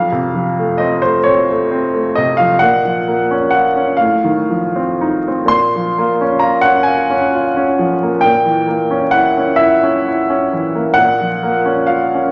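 In a slow, rubato 12/8 at 36-46 BPM, this mournful, wistful romantic nocturne for solo upright piano in Bb minor sways through a brief passage cut from a longer piece, moving from F to Bbm, F7/A and a darkening Bbdim7 before settling back on Bbm at 11.0 seconds. The piano sounds woody, polished and up front, ranging from F2 to C6. It rings in the damp bloom of a recital hall beneath a layer of vinyl crackle, tuned slightly low to A4 = 439 Hz.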